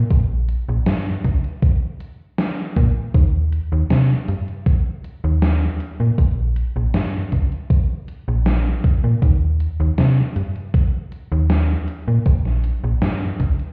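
A snappy, metallic FM slap bass sits up front in this hazy, nostalgic vaporwave clip, joined by a thumpy, overdriven electronic kick and a gated 80s digital drum machine whose crunchy hi-hat and gated-reverb snare sit lower, all heard as if muffled through a wall with stone-room reverb and a cassette-tape patina.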